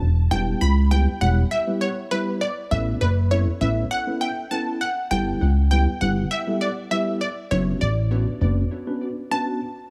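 An echo-heavy mix with small-room ambience frames this short, energetic and driving pop cut, where a glossy, dark chorused synth bass sits up front beneath a bright, punchy detuned unison pluck carrying the melody with tape echo, while a mellow, clean tine electric piano, also touched with tape echo, comps through Em, Aadd9, Em/G and Bmadd9/F# from 0.3 seconds to 9.6 seconds, with the bass dropping out at 8.6 seconds.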